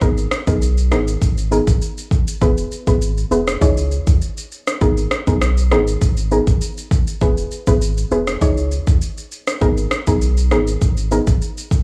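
A soft, round synth pluck opens this bouncy, sultry dancehall cut at 100 BPM in 4/4, arriving together with a punchy sub bass and an electronic afro-pop drum kit. The drums sit up front, with a deep, overdriven kick, rim click and shaker that have been re-recorded in a small room for a gritty, produced edge. Beneath them, the sine-based sub bass has a fast, pitch-dropping attack and then sustains low and deep. The pluck carries the chords in G# minor, a dark, layered tone with a sub octave, a quick filtered decay and a chorus shimmer, and it pumps with sidechain compression. The progression cycles through G#madd9, E and C#madd9 before settling back on G#madd9 at 9.6 seconds. The mix is dry and close, with a small room ambience, and the drums ring out last as the cut ends at 11.8 seconds.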